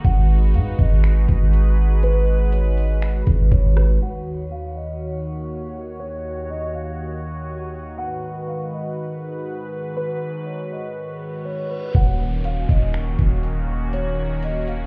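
Heard as if muffled through a wall and washed in stone-room reverb, this fragment of a longer piece is melancholic, spacious atmospheric cloud-rap with a half-time hip hop feel. A felt-muted upright piano carries the melody in a soft, boxy, intimate tone, shaded by a low-pass filter and digital delay. Beneath it, a bright, detuned sawtooth pad holds sustained chords with chorus, sidechain pumping and its own low-pass filter. A deep, boomy 808-style bass sits up front beside an electronic R&B kit of knocking kick, metallic hats, finger snaps and rim clicks, roughened by vintage 12-bit sampler grit. Bass and drums drop away at around 4.0 seconds, and piano and pad carry on beneath a filter sweep as the chords shift between Abm7 and Ebm7. A reverse cymbal and downlifter arrive at 11.2 seconds, and the bass and drums return at 11.9 seconds.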